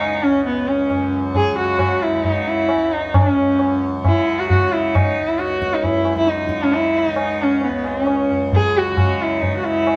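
A sarangi, tanpura and tabla sound together from the very start of this Hindustani classical passage, a ten-second fragment cut from a longer piece, set at 134 BPM in a straight 4/4 and tuned to A4 = 441 Hz. Up front, a single bowed sarangi carries the melody between B3 and G#4 with a warm, smooth, even tone, light vibrato and gliding portamento, its sympathetic strings adding a soft halo around each note. Beneath it, a softly plucked tanpura holds a buzzing, shimmering drone from C#2 to C#3, sitting lowest in the mix. The high-tuned tabla rings out close and acoustic, placed between the melody and the drone. The three musicians play live in one room, wrapped in a wet studio reverb that lends the longing, introspective mood a gentle sense of space.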